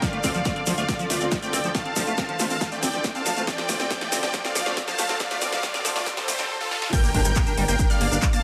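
Emotional and driving, this uplifting trance passage moves at 139 BPM in a straight 4/4 and is cut from a longer piece, building over a Dm7 chord before dropping onto Gm at 6.9 seconds. Up front, huge, lush supersaw chords carry the melody with sidechain pumping and dub echo, while a punchy, tape-warm analog kick drum, re-recorded in a large room, anchors the groove. Behind them sit a dark, floating studio string section bowing sustained chords sul tasto, a squelchy liquid acid bass playing arpeggios through phaser, ensemble chorus and digital delay, and a gritty, aggressive driven synth bass, all pumping against the kick. A layered big-room dance kit with a huge snare, metallic hats, handclaps and crash cymbal plays a drum fill through the build-up, joined by a grainy, mellow tube shaker and a very quiet riser and impact. At the drop, a bright unison pluck enters high above as a second line, and a lush hall reverb wraps the mix.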